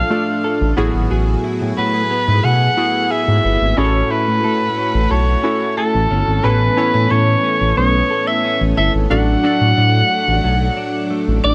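A straight 4/4 pulse at 90 BPM carries this glossy, nostalgic pop excerpt in A major, its chords moving from Dm through Eadd9 and F#m7/A before settling on Aadd9 and D/A in the second half. Out front, a breathy soprano saxophone sings the melody with an intimate, whispered vibrato, trailed by tape echo. Beneath it, a smooth, dark synth bass sits prominently, while round, wave-folded analog keys with a filter sweep and chorus fill in the accompaniment. A clean, direct-recorded electric guitar plays a compressed, picked riff through lush chorus, and a shimmering string machine of violins holds bright sustained chords with a slow attack. At 5.8 seconds a woody marimba struck with hard mallets joins in the background with a second line, all set in a light studio reverb.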